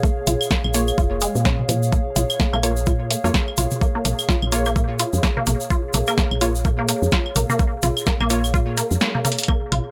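This cool, hypnotic minimal techno excerpt opens with a squelchy, resonant blip pluck riff under a filter sweep, dressed in lush chorus and tape echo. Alongside it come an overdriven, knocking kick, a grainy tube shaker and a warbling, lo-fi pad that pumps with the sidechain. A woody, round FM bass, a punchy analog drum machine with hi-hat and snare, and tape-warm electronic toms and claves soon settle into a swung groove, while crisp wavetable chord stabs echo in from 0.7 seconds; at 9.0 seconds the band hits an accent and the kick drops out, leading into a drum fill at 9.2 seconds.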